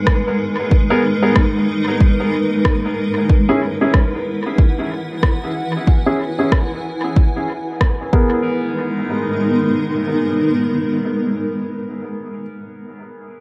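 A loping 4/4 groove with a swung sixteenth-note feel is carried by a deep, overdriven electronic kick drum that sits up front, joined by a softer, tape-warm rim click bathed in dub echo, both parts re-recorded in a large room and playing from 0.1 seconds until about 8 seconds before falling away. Alongside them, a granular cloud pad sits up front, holding sustained chords from the very start until 11.8 seconds, its detuned, blurred tone slowly evolving through a moving notch and its own built-in reverb. A bright, woody upright piano enters at 0.9 seconds with stabs through a low-pass filter that sweeps during the opening stretch, each hit trailing off into dub echo, and it carries on to the close at 12.4 seconds. The harmony moves from G#madd9 to E and back, giving this piece of ambient dub a spacious, deep mood. Moderate spring reverb and an echo-heavy mix leave the sound cavernous, with the pad and piano lingering alone after the drums stop.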